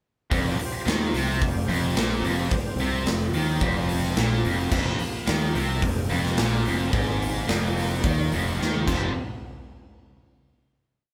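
Recorded live by a band in one large studio room with moderate reverb, this short, aggressive hard rock piece in F minor drives at 108 BPM in a straight 4/4 groove. A tight, bright distorted guitar and a darker, sludgy overdriven guitar in the background play a single-note riff, doubled by a growly fuzz bass in driving eighth notes, while a very quiet, gritty tonewheel organ with slow rotary speaker holds sustained chords underneath. The up-front acoustic kit, with its punchy kick and bright cymbals, powers the riff from 0.3 seconds, then rolls into a fill at 8.6 seconds before the band lands a final hit at 9.2 seconds.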